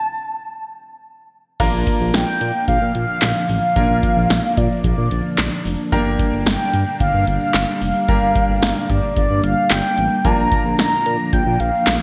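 Bright 1980s-style digital production with a moderate plate reverb frames this driving, cool synth-pop passage at 111 BPM in a straight 4/4, cut from a longer piece. A mellow, horn-like synth lead with chorus sings the melody alone for the first 1.6 seconds over silence, then the band enters: an up-front analog drum machine with a deep kick, a punchy snare, handclaps, metallic hats, crash and gated reverb, a smooth, dark synth bass, a clear grand piano with analog chorus, and full-bodied string-machine cellos holding slow-attack chords through the ensemble chorus. The harmony moves from Bb to Gm and back to Bb, with the round, wave-folded lead carrying a filter sweep and vibrato on top.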